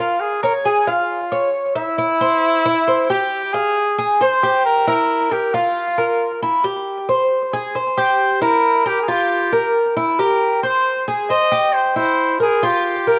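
A punchy, vibrato-laden trumpet melody and a metallic, picked Cuban tres playing arpeggios on doubled strings enter together at the start of this sultry, nostalgic Latin piece at 135 BPM in a straight 4/4, settling into F harmonic minor from 3.8 s over chords such as Abmaj7, Edim and C7, with the roomy, distant-sounding trumpet and the acoustic tres both carrying tape echo and a cassette-tape home-recording character in a moderate studio reverb, as a fragment cut from a longer piece.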